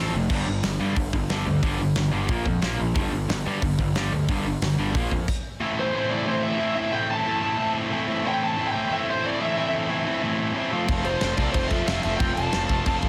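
A dense, heavily limited punk rock excerpt with light reverb, angry and urgent at 182 BPM in A minor, where a bright, double-tracked cranked stack guitar drives the riff up front over growly fuzz bass and a big-room drum kit with fat snare and punchy kick, all halting briefly at 5.3 seconds before a dark, distorted bluesy lead guitar with digital delay takes the melody from 5.8 seconds, and the bass and drums return at 10.9 seconds.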